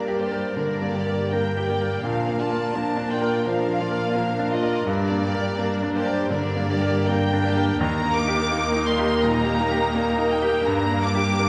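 A moving, sorrowful orchestral film-score passage in G minor opens with every part at once: a dark, woody violin section carries the bowed melody with vibrato, while a second violin line and a rich viola section sit in the background, a warm cello section holds the bass, and a very quiet concert harp rings out fingerpicked arpeggios. Up front, a bright, brilliant grand piano plays the accompaniment as the music moves in a free rubato around 84 BPM through Gm, Bb and Eb, returning to Gm at 10.7 seconds. A wet scoring-stage reverb gives this 11.5-second excerpt a spacious, cinematic sheen.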